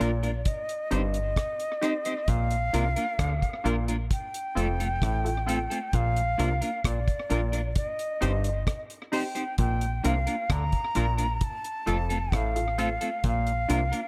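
A mellow, airy jazz flute with vibrato and tape echo sings up front over a slow, laid-back roots reggae groove at 66 BPM in Bb major, joined from the start by a round, foam-muted dub bass, a dry, dark drum kit with tight kick, hi-hat and rim click, a clean, dark picked electric guitar and detuned sawtooth chord stabs with chorus, while an overdriven, stringy clav riff sits in the background of this warm small-room excerpt cut from a longer piece.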